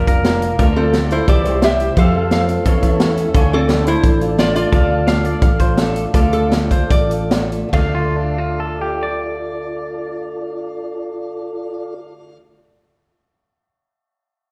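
A straight 4/4 beat drives this dusty, heartbroken honky-tonk and classic country passage in D minor, running between 139 and 174 BPM and slowing down from 4.7 to 7.7 seconds. A natural country drum kit with a punchy kick and medium-tuned snare sits up front on hi-hat, ride, snare and toms until 7.8 seconds, over a dark, round, foam-muted fingered electric bass. The lead belongs to a lap resonator guitar, fingerpicked with a slide, its metallic, nasal tone carrying the melody from 0.8 seconds. Beneath it, a twangy, compressed electric guitar plays a clean second line through tape echo. A pedal steel guitar holds sustained chords with volume swells, and a bright, full-bodied picked dreadnought acoustic guitar fills in the background. A soft, flute-like percussive tonewheel organ with chorus vibrato and a slow rotary speaker adds a short fill near 2.7 seconds, the whole band heard from further back in a wet recital hall as the chords move from Bb through Dm, C, F and A/E.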